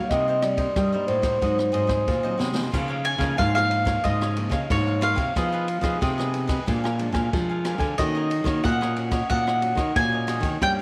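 This bittersweet, nostalgic slice of samba and choro opens with a mellow, dark vibraphone played with soft mallets, carrying a short melody over crisp, bright cavaquinho and an up-front, fingerpicked classical nylon-string guitar. A second nylon-string guitar holds the bass line from the background, its fingerpicking catching the occasional finger squeak, while an open jazz drum kit with a high-tuned snare, boomy kick and dark cymbals moves through crash, ride, rim clicks, snare and kick in a straight feel. The vibraphone bows out at 2.4 seconds, and a brief drum fill bridges into the second section. From 3.0 seconds a round, up-front mandolin, its doubled strings giving a rich, picked tone, takes the lead as a solo, moving over chords that settle on Db69 before drifting through Fm7b5, Bb7 and Ebm7. The whole ensemble sits in a small, natural studio room, with a moderate echo chamber reverb lending a gentle, lingering tail to this excerpt from a longer piece.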